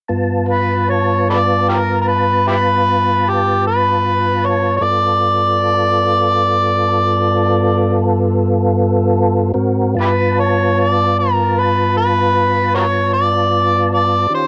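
A round, dark tonewheel organ opens at 0.1 s, holding a sustained G7 chord colored by slow rotary speaker and chorus vibrato, setting up a soulful, swaggering slow blues in 12/8 at 51 BPM in G mixolydian. At 0.5 s an amplified, overdriven harmonica takes the up-front solo in a jazz style, gritty and lightly vibratoed, with tongue slaps and scooped notes. This excerpt from a longer piece was captured at home on cassette in a booth with moderate ambience, lending both parts a tape-worn intimacy.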